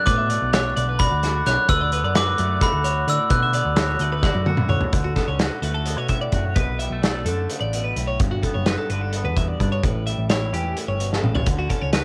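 A bell-like glockenspiel struck with brass mallets rings out a sparkling melody over the first 4.7 seconds of this wistful, radiant math rock and midwest emo excerpt, set in 7/8 at 258 BPM counted in eighths. A brilliant, compressed twelve-string electric guitar spins arpeggios beside a clean, twangy electric guitar accompaniment, both carrying a cassette tape character, while a round, dark hollow-body short-scale bass and an up-front, loose indie drum kit with a punchy kick and pumping room sound drive the chords from Bm7 and D6 toward Dmaj7, Gmaj7 and A7. Drum fills at 4.2 and 11.1 seconds mark the turns in this home cassette recording bathed in studio reverb.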